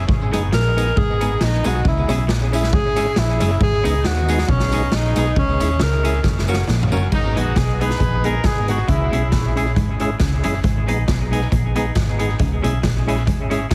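A swung ska groove at 136 BPM in 4/4, with a light swing on the eighths, drives this energetic, mischievous cut in G# minor. The street-band drum kit sits up front with a boomy kick, a medium-tuned snare and dark cymbals in an airy big-room sound. A foam-muted, round vintage bass holds the low end, while a clean semi-hollow guitar plays the accompaniment through tape echo. A twangy, slightly broken-up picked guitar riff sits very quiet beneath, and a fat tonewheel organ adds stabs in the background with key click, chorus vibrato and a slow rotary speaker; a jingly tambourine joins until 7.0 s. A tenor saxophone with a smooth top and jazz-style vibrato takes the solo over G#m and C#m changes, and a drum fill leads through an F# chord into the second section at 7.1 s, where a present, pop-style horn section briefly carries the melody. The recording has a heavily compressed, radio-like sound in a small room.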